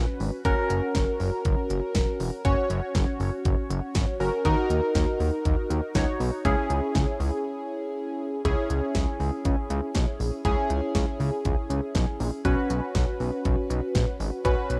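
A fat, wave-folded analog bass with detuned sawtooth and triangle tones anchors this melancholic, cool synth-pop excerpt at 120 BPM in C# dorian alongside round analog keys treated with chorus and phaser, joined by a layered electronic pop drum kit with knocking kick, crisp hats and cassette tape grit entering at 0.2 s, moving through F#, D#m and C#m to a break at 7.5 s before settling on Bsus2 at 12.4 s, all in a light digital ambience with a homemade cassette character.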